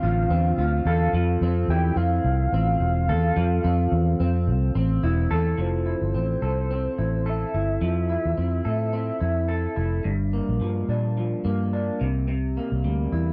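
This dreamy, hazy slice of indie bedroom pop opens with a soft, octave-layered synth lead carrying the melody in a round, sustained tone with vibrato, chorus and delay, over a twangy, slightly broken-up electric guitar through a small old amp, its chorus carrying a warbly pitch drift. A dark, foam-muted fingered bass sits punchy and up front at 108 BPM with a light swing in F major. The lead drops out at 9.8 seconds, leaving guitar and bass to carry the dry, gritty recording to the cut at 13.3 seconds.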